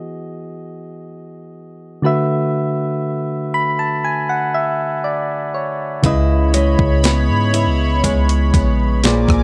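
Contemporary R&B at a slow 60 BPM, sensual and moody, cut from a longer piece, opening on soft, round electric-piano-like synth keys with chorus, moving through Emaj9, D6 and C#m7 and adding a fill from 3.0 to 6.0 seconds. At 6.0 seconds a clean, sampler-style 12-bit drum machine with a thumpy kick, a deep, dark 808-style bass held up front, and woody, full-bodied picked steel-string acoustic guitar arpeggios with tape echo arrive together, followed at 6.3 seconds by a shimmering, retro chorused pulse-width pad. A muted felt upright piano with audible action noise sits faintly in the background with tape echo, all within a digital ambience and a dry, gritty hardware sound.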